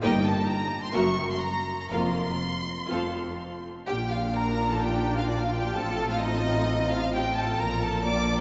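A full string orchestra opens together in a lively, graceful classical-period passage with rubato phrasing. An up-front, dark violin section carries the melody high, with lush vibrato and portamento, over a distant, soft-edged second violin line. Beneath them, smooth-topped violas supply accompaniment while a close, even cello section and a woody, distant double bass section share the bass, all bathed in a wet church reverb with a mellow top, and a new section begins at 3.9 seconds.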